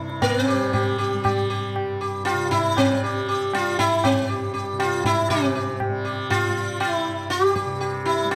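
Hindustani classical music in a meditative, solemn mood, this brief excerpt from a longer piece moves at 119 BPM in a straight 5/4. The sitar carries the melody between C4 and G4, its plectrum-plucked tone bright and buzzing, with sympathetic strings adding a shimmering halo as it sits up front. Beneath it, the tanpura holds a softly plucked drone from G2 to G3, its buzz blending into the background at a much lower level. The tabla enters at 0.1 seconds, high-tuned with a short ring, its close, dry sound contrasting with the melodic instruments. A moderate recital hall reverb fills the space, and a faint mains hum lies underneath, while the music shifts into a new section at 5.3 seconds before the cut at 8.3 seconds.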